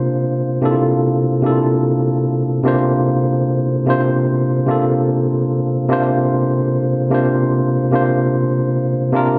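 A lightly swung 16th-note feel at 74 BPM in 4/4 carries this soulful, relaxed R&B fragment, cut from a longer piece, where a worn, slightly out-of-tune tine electric piano plays solo for 9.4 seconds on a C9sus4 chord, sitting up front with a light overdrive, slapback echo and a built-in-speaker character inside a light reverb.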